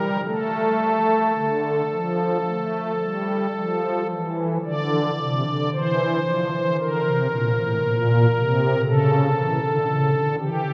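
This classical, chorale-style piece for pipe organ carries a grave, dark mood, moving at a slow 54-59 BPM in 4/4 with a rubato feel. The solo organ is voiced with string stops and a celeste, giving a soft, shimmering tone and a romantic voicing that spans A2 to D5 and sits up front. A long cathedral reverb of 4.8 seconds surrounds it, so the sound seems heard from further back in a vast, resonant space. The harmony passes from Dm/A through A5 and a bare stretch around 4.7 seconds, then on to Bbsus2 and A/C#. This short passage, about 10.7 seconds long and cut from a longer piece, stays in a single section throughout.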